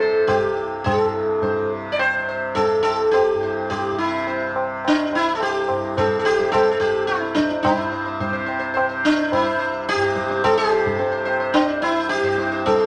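Meditative and radiant, this Hindustani classical fragment in raga bhupali sets a bright, buzzing plucked sitar up front with shimmering sympathetic strings over a softly plucked tanpura drone and high-tuned, close tabla, all three playing throughout its 12.9 seconds in a reverberant studio as the pace gradually quickens.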